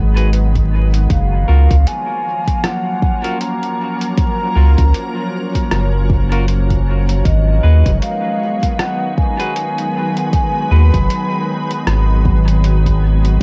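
Ambient dub at 78 BPM in G# dorian with a swung, hazy and deep mood, this excerpt sets a soft organ-like pad with ensemble chorus and built-in reverb over a round, up-front sub bass, while faint bright stabs from a clean semi-hollow electric guitar enter at 0.2 s with dub echo alongside a muffled, overdriven sampler-style hi-hat and rim click, an electronic kick joins at 0.6 s, and a mellow, hollow concert flute carries the vibrato-tinged melody from 1.1 s through F#maj7 and back to G#m7, all in a dry cassette home recording dusted with vinyl crackle.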